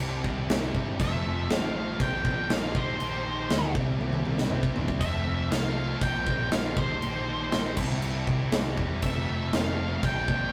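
Cathartic and anthemic, this cut from a longer quiet-loud alternative rock piece moves in a straight 4/4, with the guitars and bass pushing from the very first beat. A thick, warm fuzz guitar and a tight, bright distorted guitar set in the background play the riff together, while a picked electric bass gives the low end a warm, amped weight. The big acoustic rock kit sits up front with a punchy kick, medium-tuned snare, toms and bright crash cymbals, and it breaks into a fill between 4.0 and 5.0 seconds. From 1.0 seconds an octave-fuzz lead guitar with a dark, distorted edge carries the melody high above the riff. The chords cycle through C, Fmaj7, Bbsus2 and Eb/Bb, and the whole performance has the rough, roomy feel of a rehearsal-room recording.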